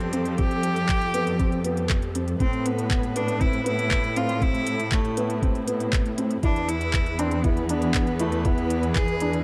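A biting, nasal solo cello carries the melody up front in this moving, melancholic excerpt of piano and strings electronica in A minor at 119 BPM, moving over Fadd9, Amadd9 and E chords. A felt-muted upright piano with tape echo plays a soft, intimate riff from 0.1 seconds, while a lush string section holds dark sustained chords in the background and a rich, bowed cello section takes the bass with tube saturation and sidechain pumping. A muffled, thumpy, pitched-down electronic kick enters at 0.4 seconds beside an organic electronic kit of handclaps and crisp hi-hats, all set in light reverb and a dark, warm production.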